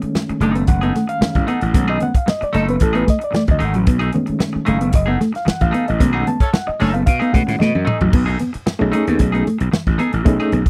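A straight, strutting 4/4 groove drives this playful funk fragment, cut from a longer piece and built on a punchy, airy big-band drum kit with kick, snare, hi-hat, toms and crash sitting up front. A growly, overdriven slap bass is just as forward and bright, while very quiet low-tuned congas add a thin-skinned patter underneath. A dark, fingered electric guitar holds down the riff as a clean, compressed semi-hollow guitar adds hollow-bodied accompaniment in the background. An overdriven reed electric piano leads with gritty, tremolo-laden stabs, taking a solo up to 8.1 seconds. From 6.0 seconds the band hits accents, at 6.4 seconds a distant, roomy horn section with light vibrato adds a brief second line, and a drum fill at 7.6 seconds pushes into a new section, all captured in a dry, close 1970s-style studio sound.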